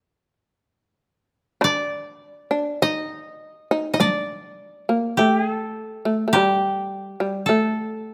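Close, detailed microphones catch a recital hall's moderate reverb in this austere, calm fragment of traditional Japanese chamber music, moving in a slow, rubato 4/4 around 48-54 BPM in D miyako bushi. Up front, the koto carries the melody with a dry, woody fingerpicked tone, while the fretless shamisen, plectrum-plucked and buzzing with bright, percussive power, plays a second line an octave lower. A taiko ensemble struck with heavy sticks joins at 1.6 seconds and drops out at 6.6 seconds.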